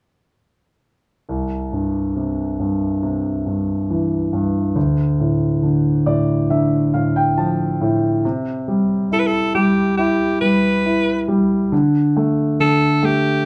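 A warm concert grand piano opens this heartfelt, tender pop excerpt at 1.3 seconds, laying down accompaniment in C major at a slow 69 BPM in a straight 4/4, its deep bass and open tone sitting up front. The harmony moves from C to Dm, and the piano plays a fill from 5.6 to 8.2 seconds before the music shifts into a new section built on Cmaj7 and then D5. At 9.1 seconds a raspy alto saxophone enters with a forceful solo melody in a narrow range, its gritty, edgy tone marked by vibrato, scooped notes and punchy attacks. The saxophone is present and up front in a pop style, set against the piano. The pair sound like a band playing live in one room, with a wet studio reverb adding a short halo to the performance.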